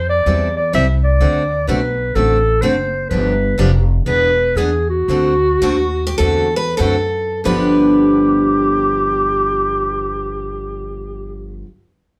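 A breathy clarinet carries the melody up front in this lively, swinging slice of jazz manouche, its mellow tone marked by vibrato and scooped notes over a woody pizzicato upright bass and a bright picked steel-string acoustic guitar with audible finger squeak in the accompaniment. The tempo moves between 88 and 126 BPM in G mixolydian, easing back from 3.1 to 7.4 seconds as the chords pass from Am7 and D7 through G7 and E7. A second full-bodied acoustic guitar adds its own picked line from 5.6 seconds, the band heard live in one room with moderate studio reverb.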